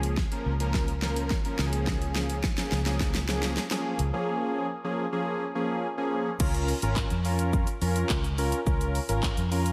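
Dance-pop at 106 BPM in Db major, euphoric and carefree, this fragment of a longer piece sets a fat, detuned sawtooth polysynth with slapback echo and sidechain pumping over a dark, foam-muted electric bass that also pumps and a punchy, layered electronic drum kit of kick, fat snare, bright hats, shaker, handclaps and crash, building from a drum fill up to a drop at 6.4 seconds inside a big arena-like digital reverb.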